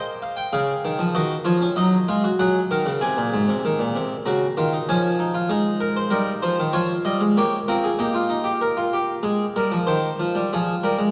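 Joyful and stately, this baroque-style three-part fugue for solo harpsichord moves at a straight 96 BPM in 4/4, its plucked, full-bodied Flemish-style tone with two sets of strings sitting up front and mid-forward as harmonies centred on Ab pass through Db, Ebm and Bbm, all bathed in a long, wet church reverb and vinyl crackle in this short passage cut from a longer piece.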